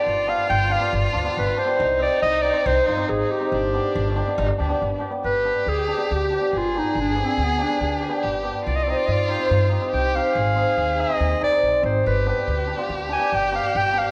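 A punchy, close-miked clarinet leads this festive yet bittersweet klezmer excerpt in G phrygian dominant at 140 BPM alongside a distant, rich violin second line with vibrato and portamento, a shimmering hammered cimbalom and a woody, growly pizzicato upright bass up front, with the clarinet taking a solo from 5.2 s as the chords move through G, Cm and Ab, and the recording sits in a recital hall's reverb on worn, warbling old cassette tape with drifting pitch.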